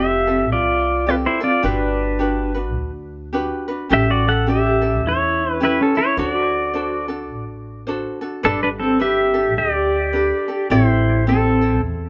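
Hawaiian swing in a relaxed, languid mood, with an electric pedal steel guitar up front carrying the fingerpicked melody in clean, compressed slide lines, volume swells and analog delay, while a breathy, hollow clay bass ocarina with vibrato adds a quiet second line in the background, a light fingerpicked acoustic ukulele gives sparkling accompaniment, and a woody, growly pizzicato upright bass anchors the low end, the whole band playing live in a small room through a brief piece cut from a longer performance.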